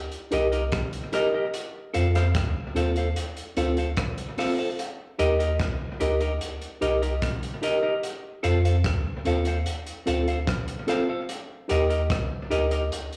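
The warm sub bass stands out most, sitting deep, round and up front with a fast attack and long sustain under this laid-back roots reggae groove at 74 BPM in F mixolydian. A crunchy breakbeat drum kit of hi-hat, kick drum and rim click sounds gritty and saturated, its punchy kick and rolled-off top wrapped in analog delay and slapback echo. A clean electric guitar carries the accompaniment, dark and picked and placed up front, also treated with analog delay and slapback echo. A reedy electric piano adds mellow stabs through its built-in speakers, shimmering with fast tremolo and slapback echo. The harmony moves between Eb and F, landing on F at 1.5 seconds and back on Eb at 11.3 seconds. The whole excerpt has the feel of a live gig heard through the venue's PA, with club reverb and a small room ambience.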